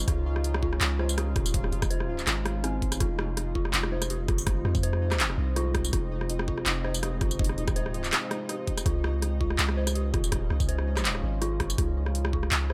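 A half-time drum and bass groove at 164 BPM with a light 16th-note swing drives this tense, heavy F minor piece, its knocking, overdriven electronic kick and an up-front kit of bright hi-hats, handclaps, rim clicks and tambourine entering together at 0.1 seconds, both re-recorded in a small room. Underneath, a deep 808-style sine bass holds long notes while a moody, detuned sawtooth pad sustains Dbadd9 and Fm chords through chorus, reverb and sidechain pumping. An eerie, inharmonic FM bell plays mellow arpeggios through chorus and delay, and a pulsing, tempo-synced triangle texture sits in the background, set in a light digital ambience.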